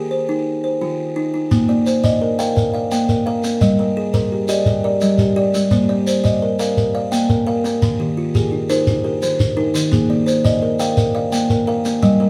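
A buzzing kalimba, woody and hollow-boxed with a ringing, buzzing tone, opens this hypnotic, rippling excerpt of southern African traditional music alone. It spins mbira-style interlocking arpeggios in a straight 12/8 at 114 BPM in Bb mixolydian, cycling through Eb, Bb and Gm. At 1.5 seconds a grainy, mellow shekere joins up front, and a second kalimba with a solid-board ring adds its own arpeggios just after, all heard from further back in a studio room with wet reverb.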